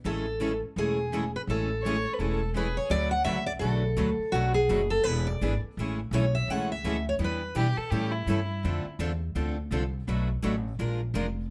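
Playful and swinging, this brief excerpt of acoustic string swing in the gypsy-jazz manner moves at a brisk, lilting four-beat pulse. A picked steel-string guitar carries the melody from the opening moment until about 7.6 seconds, while two more picked acoustic guitars supply the accompaniment beneath it, one sitting up front with the crisp ring of fresh strings and another tucked into the background. A finger squeak on one of the guitars adds a touch of live, handmade texture. An upright bass, plucked on gut strings, gives a woody, thumpy foundation close to the listener. A single bowed violin slips in for two short phrases, first at 1.8 seconds and again as the lead guitar drops out, singing with rich vibrato, soft attacks and expressive slides. The harmony moves through jazzy seventh and sixth chords, all set in a moderate club-sized reverb that keeps the small group sounding intimate.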